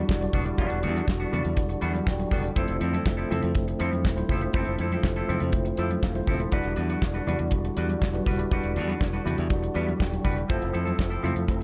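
Glamorous and sultry, this short disco excerpt moves in a straight four over a dry, damped 70s drum kit with handclaps, a tight kick and a medium-tuned snare up front, while a bright fingered electric bass sits underneath and very quiet congas add soft-handed color. A twangy, picked clean electric guitar and a mellow tine electric piano share the accompaniment over Em9 and Fmaj7 chords, with the electric piano stepping out for a fill at 5.5 seconds. Behind them, a fat, lightly overdriven tonewheel organ holds sustained chords through a fast rotary speaker with audible key click, all in a dark production with little reverb.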